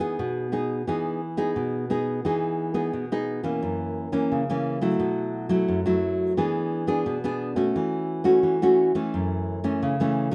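Samba in E major at a relaxed 87 BPM, this short cut from a longer piece has a joyful, sunny mood. A lone fingerpicked nylon-string guitar carries the whole 10.3 seconds, ranging from F#2 to G#4 with a deep classical tone and a close, up-front presence. Finger squeaks on the strings add intimacy to the acoustic sound. The harmony opens on Emaj7 and moves through F#7, B7sus4, E7 and A6/E before settling on F#m7, with a new section beginning at 2.2 seconds. A moderate studio reverb gives the guitar a sense of space in a large room.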